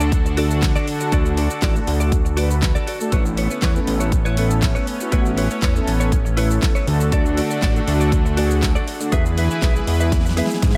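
A euphoric, summery dance-pop excerpt opens with an up-front electronic drum kit of punchy kick, fat snare, hi-hat, handclaps and shaker, alongside a thick, saturated, sidechain-pumped sawtooth analog bass, a lush, detuned unison pad with a slow attack and long release, a round, dark, brassy synth line with chorus, and a clean, picked electric guitar riff recorded direct with analog chorus, all set in light digital ambience before a drum fill arrives at 10.1 seconds.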